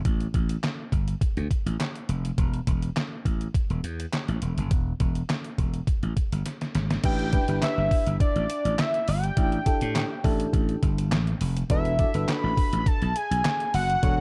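A straight, danceable 4/4 groove of growly, punchy slap bass and a thumpy, overdriven 8-bit drum machine with handclaps drives this funky early-eighties boogie funk excerpt, where after a drum fill at 6.5 seconds a glassy, chorused FM electric piano joins at 7.0 seconds and a fat, detuned sawtooth analog lead with vibrato and tape echo follows at 7.1 seconds over A9sus4 and E9sus4 chords in a dark, dry production.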